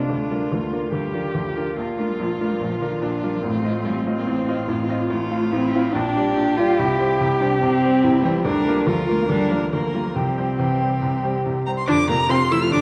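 A bright baby grand piano sits up front in this quick, cheerful classical-period movement for piano quartet, its brilliant, short-sustained accompaniment running from the low bass up through the middle of the keyboard at 143 BPM in a straight 4/4. Above it, a single violin carries the melody with a close, smooth, even tone and vibrato, reaching high into its upper register. A lone cello supplies the second line in its tenor and bass range, sounding warm and even with a smooth top, while one viola fills in the middle with a rich, focused bowed tone. The music starts in Bb major and moves to F major from 5.1 seconds, arriving on an F chord at 11.9 seconds before the excerpt breaks off. The whole performance sits in a wet recital-hall reverb and carries the worn, warbling pitch drift of old cassette tape, which lends the spirited playing a faded cast.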